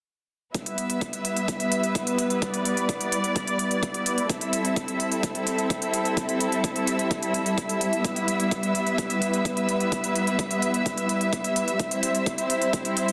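Anthemic and emotional, this short cut from a longer festival progressive house track moves in a steady, straight 4/4 metre. A muted studio string section carries sustained bowed chords from 0.5 seconds, its con sordino tone dark and veiled with vibrato, pumping under sidechain compression as the harmony moves from Em to Am7, back to Em and on to C. An electronic kick drum, punchy and tape-warm with high-pass filtering, drives beneath the strings and drops out at 12.8 seconds. Crisp, overdriven electronic hi-hats ride along until 13.1 seconds. Both drums are layered and re-recorded in a large room, and a lush hall reverb with a 2.2-second decay surrounds a dense, heavily limited modern master.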